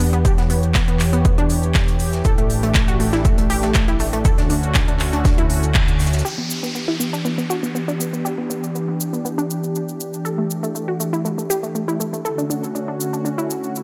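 A dreamy, emotional progressive house passage cut from a longer piece, built on a soft-attack, chorused and tremolo-laced analog pad holding sustained chords around Em7, A7sus4 and Dmaj7, with a lush, detuned unison pluck spinning arpeggios through dub echo, both pumping against the sidechain and swept by filters. For the first 6.2 seconds a fat, tube-saturated sawtooth bass, joined by a punchy, up-front electronic kick from 0.2 to 5.9 seconds, drives the groove alongside a faint big-room rock kit of hi-hat, shaker and snare, while the house kit's handclaps, crisp hats and shaker carry on throughout. After a band accent at 5.7 seconds the low end falls away and an electronic downlifter descends into a sparser passage under light reverb.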